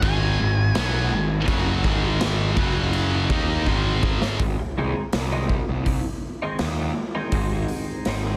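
This restless, bittersweet slice of quiet-loud alternative rock opens with a pair of bright, scooped high-gain guitars churning out a riff, one sitting in the background, under a dark octave-fuzz lead melody with slapback echo, all driven by a growly, overdriven picked bass and a raw garage drum kit that sits up front with a punchy kick, saturated, pumping stone-room character and a rolled-off top. The lead melody drops out just before a drum fill from 3.7 to 4.4 seconds closes the heavy opening, after which the riff guitars stop and a clean, compressed twelve-string electric guitar takes over with phased, echoing arpeggios over the bass and drums. The dry, dense, heavily limited mix keeps the parts close and in the listener's face throughout this brief cut from a longer piece.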